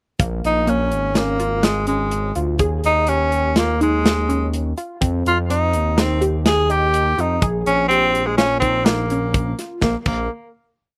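The recording is dry and close, with barely any reverb and an open-air sense of space. This is a short, complete progressive instrumental piece in 5/4 at 125 BPM in Bb dorian, with an intricate, tense mood and a straight feel. A modern acoustic drum kit with a small-room character drives the 5/4 groove from the start, its medium-tuned snare, tight kick, hi-hat and crash sitting up front. Locked to the kick drum is a smooth synth bass blending sawtooth, square and triangle tones with a touch of ring modulation. Above it, a sequenced synth ostinato of detuned sawtooth and triangle arpeggios, shaped by a filter pluck and treated with chorus, phaser and slapback echo, keeps things driving yet mellow. From 0.5 seconds a clear tenor saxophone leads in a pop-style solo of motif-based sentence phrases with light vibrato and slapback echo, over a cycle of Bbm7, Eb9sus4, Fsus2 and back to Bbm7, before the piece closes on a final note at 9.8 seconds.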